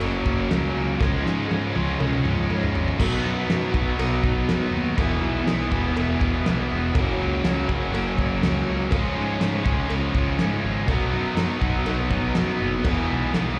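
A driving, confident classic rock excerpt from a live club gig opens with three overdriven guitars riffing together, each with slapback echo: a bright distorted one, a crunchy one in the background and a dark, biting, double-tracked one. Beneath them sit an up-front, round fuzz bass and a dry, fat-snared 70s drum kit that plays a fill from 1.0 to 3.0 seconds, while a very quiet metallic cowbell and a soft, flute-like tonewheel organ on a slow rotary speaker sit far back in the club reverb.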